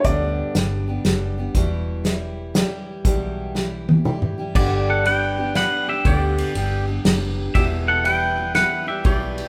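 A clear, woody upright piano phrase opens this sunny, heartfelt honky-tonk waltz at 120 BPM in a swung 3/4, over full-bodied picked dreadnought acoustic guitar, a dark, round, foam-muted vintage electric bass and an up-front acoustic drum kit with punchy kick, dark cymbals and bundle sticks; the piano drops out at 1.5 s, a drum fill arrives at 3.5 s, and at 4.6 s a bright, scooped, twangy electric guitar takes the melody with spring reverb while a pedal steel adds background chords with volume swells, all in a moderate, large-room studio ambience from a band playing live together.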